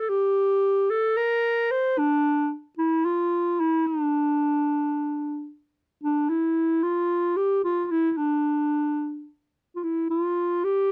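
Turkish music in free time, this short excerpt cut from a longer piece offers a solo clarinet in the D makam ussak, with a melancholic, hypnotic mood. The clarinet plays alone throughout its 10.9 seconds, moving between D4 and C5 with a mellow tone and a smooth top, phrased in a classical style. It sits up front in a dry, close recording with a 1970s studio character, touched by moderate studio reverb. The passage falls into two parts, with the second section arriving at 5.8 seconds. The unmetered line gives the piece an inward, meditative pull.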